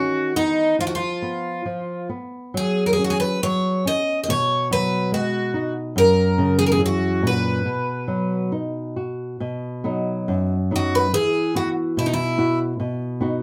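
In a rubato 2/4 at 70 BPM, this nostalgic, tender fado-style ballad in B major, cut from a longer piece, sets a shimmering, octave-doubled picked twelve-string acoustic guitar melody with audible finger squeak up front over a dark, thumb-plucked flamenco guitar accompaniment, both held in a small, wet room, with the melody stopping at 12.6 seconds while the flamenco guitar carries on alone to 13.4 seconds.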